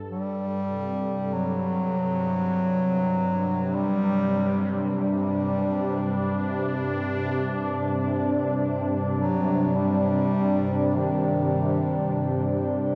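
Dark and unsettling, this dark ambient drone is cut from a longer piece and hangs in a vast, wet reverb with a tail of about 7.9 seconds. A sweeping, resonant pad holds sustained chords from 0.0 to 13.0 seconds, its detuned sawtooth tone airy and bright, with a noise layer, soft attack, long release, chorus and shimmer reverb. Its sound evolves over a single Csus2/G chord. Entering at 0.1 seconds, a mellow bass clarinet carries a solo melody in a classical style, its smooth top and soft attack bathed in shimmer reverb and a diffuse ambient delay. Both parts sit up front in a dark, warm production.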